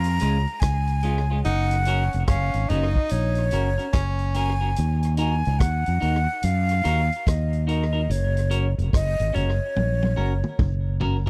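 A 72 BPM groove in 4/4, swung on the sixteenths, carries this uplifting, warm roots reggae excerpt, cut from a longer piece. A vintage drum kit with a tight kick, hi-hat, rim click and toms sits in a natural studio room with tape echo, while a round, dark fretless bass, thickened by tube saturation, stands up front. A clean, picked electric guitar adds accompaniment through a phaser and tape echo, and the chords move from Db to Gb, then Ebm and back to Gb. A breathy metal flute with lifted highs and a straight tone carries the melody, and a whispered, intimate tenor saxophone traces a soft second line beneath it until 4.6 seconds, both colored by tape echo. A drum fill at 9.8 seconds closes the passage, all captured in a dry, close 1970s-style studio sound.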